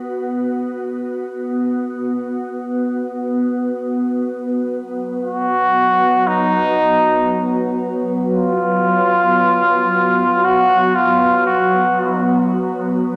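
Luminous and weightless, this ambient excerpt floats in free time over a calm, nasal organ-like drone that sounds from the start, thickened by ensemble chorus and its own reverb. At 5.2 seconds a warm flugelhorn enters with a soft attack and light vibrato, singing a classical-style solo line through cassette tape and tape echo until 12.2 seconds. A wet spring reverb and the character of a home cassette recording wrap the fragment, which is cut from a longer piece.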